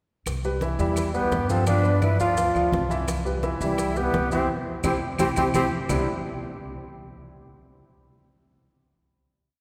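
A straight, brisk 4/4 Afro-Cuban jazz groove opens at 0.3 seconds, with ringing, low-tuned congas mixing slaps and open strokes, very quiet, tight bongos in steady eighths with a hand bell, grainy maracas, and distant, woody claves tapping out a two-bar time line. Underneath, a dark, pizzicato upright bass plays a tumbao that anticipates the chords, while an intimate concert grand piano, with audible action noise and deep bass, lays down a montuno in octaves. At 0.8 seconds a clear, forceful trombone takes the lead up front with a motif-based melody in period phrases and light vibrato, shadowed by a breathy metal flute with soft attack and lifted highs, playing a harmony line mostly in thirds. The full band hits an accent from 4.5 seconds, a drum fill runs from 5.2 seconds, and the piece settles on a final chord at 5.9 seconds. The mood is sunny and sophisticated, and the whole ensemble sits in a lush church reverb that gives it a spacious, resonant glow.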